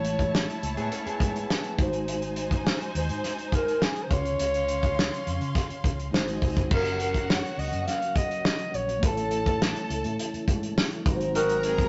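A rough rehearsal-room recording with tube saturation, a dulled top and a stone-room reverb carries this lush, smooth 1970s-style soul excerpt at 104 BPM in 4/4, where a breathy, subtone alto saxophone sings the melody with scooped notes over a clear, bowed string section, a mellow tine electric piano, a round, foam-muted fingered electric bass and an up-front soul drum kit with dark cymbals and a tight kick; a dark, slightly broken-up electric guitar riff through a small old amp with spring reverb appears from 0.8 to 1.8 seconds, a tonewheel organ with key click and fast rotary speaker holds background chords from 6.7 seconds, and a distant horn section adds warm stabs at 11.3 seconds.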